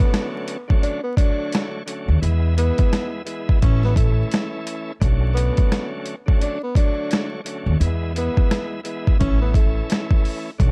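Gritty and reflective, this short boom-bap hip-hop passage at 86 BPM in B dorian swings over an overdriven, compressed sampler-style drum kit with a thumpy kick, medium-tuned snare, hi-hat and rim click up front, while a bright tonewheel organ with key click, light overdrive and fast rotary speaker comps through Bm7, E and A, a breathy, mellow tenor saxophone sings a subtone jazz melody with vibrato, scooped notes and tape echo until 9.9 seconds, and a woody pizzicato upright bass on gut strings joins at 2.1 seconds, all set in a dark, dry production dusted with vinyl crackle.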